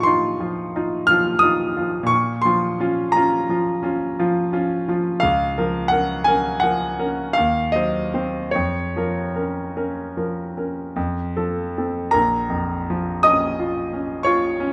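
A clear concert grand piano sits up front in a moderate recital hall, its deep bass and smooth, vintage tone shaped by a short sustain. This is a melancholic, yearning romantic nocturne for solo piano, taken in 9/8 with free rubato and spanning from the low bass to the upper treble. The opening passage moves through minor and diminished harmonies before settling on a dominant chord at 11.0 seconds, and a new section begins at 12.1 seconds as this brief extract from a longer piece breaks off.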